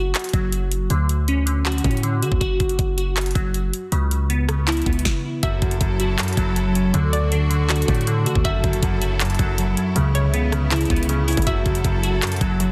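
Hard-hitting yet melancholic, this half-time trap cut from a longer piece sits at 159 BPM in F# minor, moving through chords such as Dmaj7, C#m7 and F#m7. Glassy, detuned digital keys play arpeggios up front from the start, colored by chorus, a low-pass filter sweep and digital delay. Beneath them a punchy 808-style bass hits hard with a sine body and a noise layer. An electronic trap kit with a knocking kick, sharp snare, bright hats, handclaps and rim clicks drives the track. After a brief stop at 5.1 seconds, the second section opens at 5.4 seconds with a fingerpicked concert harp ringing warmly under a low-pass filter, a lush, biting symphonic string ensemble holding bowed chords with vibrato, and a hollow, bouncy square-wave pluck with ring modulation sitting in the background. The dense, heavily limited modern master carries light reverb and a digital ambience.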